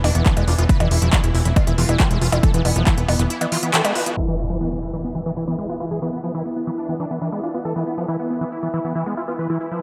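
An overdriven, up-front electronic kick pounds from 0.3 to 3.0 seconds beside a punchy, wave-folded analog bass and a layered techno kit of handclaps, smooth hi-hats and percussion blips, driving this hypnotic psychedelic trance excerpt as a squelchy, gritty acid bass riff with tape echo opens into a filter sweep once an electronic impact hits at 4.2 seconds, while bright, detuned supersaw stabs with phaser and a bubbling, resonant stepped-filter chord texture with chorus and 12-bit sampler grit float in a dreamy mix soaked in huge ambient reverb.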